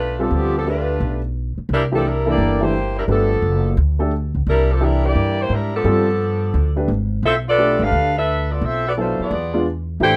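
A light reverb and a rough home-demo mix give this energetic, swinging big band excerpt an unpolished, homespun sound. At 173 BPM in 4/4 with a swing feel on the eighth notes, it moves briskly through a G mixolydian passage, leaning on G9 and C9 before turning to Bm7 and E7b9 near the end. A tight, mellow saxophone section carries the melody from the first second, its light vibrato and roomy tone sitting up front in the jazz style. Underneath, a pizzicato upright bass with steel strings gives a woody, thumpy pulse. A grand piano joins at 0.2 seconds to supply accompaniment with an intimate, natural character, with its action noise audible in the mix.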